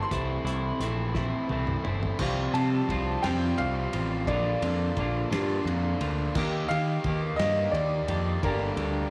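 Indie rock in a slow 6/8 at 58 BPM, cool and bittersweet, cut from a longer piece and heard as a live gig through a club's PA with small room ambience and club reverb. A clear, woody upright piano carries the melody, touched by slapback echo and analog delay, while a twangy clean electric guitar with subtle chorus and a crunchy overdriven guitar, sitting in the background with its own slapback echo, both play riffs. The growling picked electric bass sits up front, bright and overdriven, direct and amped. A cloth-damped, thuddy drum kit sounds muffled and lo-fi, with a fat snare, tight kick and rolled-off top, working across kick, snare, hi-hat, toms, ride and crash, and a drum fill from 1.2 to 2.2 seconds leads into the second section. The harmony moves from Am through Csus4, Bb and Ebmaj7, landing on Gm near the close.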